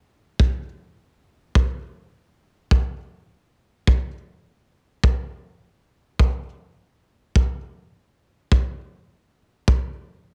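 Heavily compressed with a radio-like sound and little reverb, this rollicking, soulful blues fragment in 12/8 at 52 BPM (dotted quarters) with a straight feel features only an acoustic kick drum, tight and up front in a roomy studio with brushes, playing from 0.4 to 9.9 seconds.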